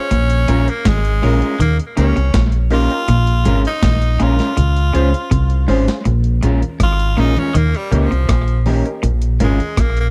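A dry, close 1970s-style studio sound frames this serious, laid-back roots reggae cut from a longer piece, moving at 81 BPM in Bb dorian over Bbm7, Eb7 and Dbmaj7 chords. A round, up-front fingered bass anchors a dusty, compressed sampler-style drum kit with a thumpy kick, overdrive and slapback echo. Very quiet low-tuned congas and a slightly broken-up guitar with tape echo join in, while a bright, clean picked guitar riff and a muted, detuned sawtooth chord stab with phaser sit in the background. A raspy, forceful tenor saxophone with light vibrato and tape echo carries the melody from the start, and after a drum fill it takes a solo at 6.1 seconds.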